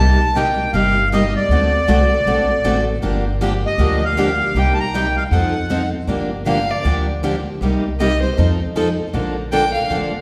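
Acoustic string swing in the jazz manouche style at 157 BPM, virtuosic and bittersweet, opens with a reedy, airy accordion melody up front over two bright, picked steel-string acoustic guitars (one up front with finger squeak, the other in the background with fresh strings) and a woody, thumpy pizzicato upright bass on dark gut strings; the accordion drops out at 5.9 s, the music turns to G minor at 6.1 s, and a single bowed violin with vibrato, portamento and a soft attack takes an expressive, close solo from 6.5 s, all heard in a wet recital-hall reverb in this cut from a longer piece.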